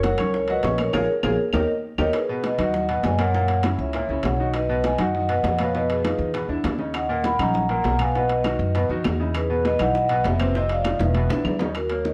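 Passionate, danceable salsa at 200 BPM, cut from a longer piece, where a dark, smooth vibraphone with its motor off carries the melody up front over a brilliant, bright concert grand piano, a thumpy pizzicato upright bass with steel strings, background congas that are high-tuned and thin-skinned, round low-tuned bongos, saturated metal-shell timbales and woody claves that play from 0.2 to 2.1 seconds and again from 6.9 seconds, with drum fills near 0.9 and 11.0 seconds and a band accent near 0.9 seconds, all wrapped in light reverb and the worn, warbling pitch drift of old cassette tape.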